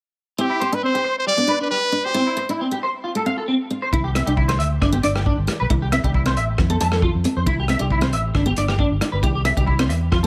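Joyful and warm, this highlife guitar band fragment moves at a straight 136 BPM in 4/4 and sits in C major, cycling through C, G and F chords. A brilliant, forceful trumpet opens up front with a pop-style solo melody full of vibrato and scooped notes, stopping at 2.5 seconds. Beneath it, a picked steel-string acoustic guitar plays concert-style accompaniment while a twangy, slightly broken-up electric guitar spins arpeggios through ensemble chorus and tape echo. At 3.9 seconds a round, amped fingered electric bass arrives with a crunchy breakbeat kit, whose gritty, saturated hi-hat, tight kick and rim click have a dark, rolled-off top. Light reverb and a small room ambience frame the ensemble as the passage breaks off mid-groove.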